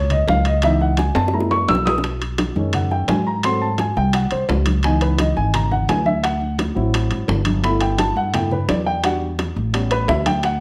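Afro-Cuban jazz with a danceable, sophisticated mood, built around a dark, mellow baby grand piano taking the lead up front, with a woody pizzicato upright bass close beside it. Bright, thin-skinned congas and tight, high-tuned bongos sit in the background, while ringing metal-shell timbales sound close and dry, and a drum fill arrives at 1.2 seconds before the phrase repeats at 2.0 seconds. The harmony moves through rich extended chords such as C#m9, G#7b9 and G69, all set in a moderate large-studio reverb.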